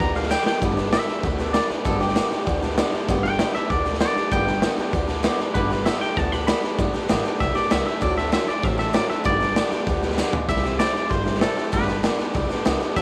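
A straight, driving four-beat groove propels this rollicking, upbeat rockabilly clip, cut from a longer piece. The raw garage drum kit sits up front with a punchy kick, a medium-tuned snare and gritty, saturated hits ringing in a bright stone room, and it rolls in with quick fills around 0.3 seconds and again at 10.2 seconds. Underneath, the upright bass is played pizzicato on gut strings, giving a woody, thumpy low end, while the picked swing-style acoustic guitar picks out a boxy accompaniment with fresh-string sparkle. Over the top, the twangy electric guitar takes a clean, fingered solo with a scooped tone and a tape echo trailing each note, moving from G through D7 and back. At 10.5 seconds the harmony shifts to C before returning home to G, all under a light reverb.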